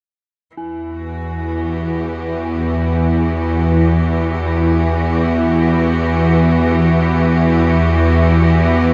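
Awash in a huge, wet reverb with a cassette-tape grain, this unsettling dark ambient excerpt in free time and E minor centers on an up-front, tense, detuned sawtooth drone with ring modulation and vibrato entering at 1.0 seconds, while a distant, bright symphonic cello section fades in on sustained chords from 0.6 seconds and a very quiet bronze singing bowl, struck with a wooden striker, adds a ringing, slowly beating metallic shimmer.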